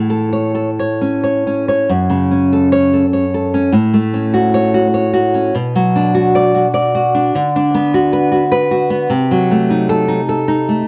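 Set up front in a moderate spring reverb, a bright nylon-string guitar with fresh strings is fingerpicked in a tender, warm romantic classical style, a short fragment taken from a longer piece. The solo line flows in three with uneven, rubato timing, opening on an A chord before settling into F# minor at 1.9 seconds and moving on to B minor. It reaches a diminished chord at 9.1 seconds as the fragment closes.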